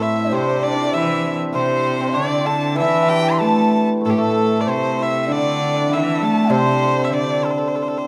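Rubato phrasing floats over a 2/4 pulse at 97 BPM in this tender, graceful Chinese traditional fragment for chamber ensemble, set in the A yu mode and cut from a longer piece. A clear, nasal erhu carries the melody up front, its airy bow, light vibrato and portamento giving the line an earthy, close presence. Beneath it, a bright, biting cello adds an intense bowed second line with vibrato, while a mellow, hollow large dizi, with its bamboo body and buzzing membrane, offers a pure, tongued second voice from the background. Two hammered dulcimers ring and shimmer throughout, one sounding a warm second line in the middle register and the other a brighter lower accompaniment. The cello and dizi fall away at 7.4 seconds, leaving the erhu and dulcimers to finish at 8.1 seconds inside a wet recital-hall reverb.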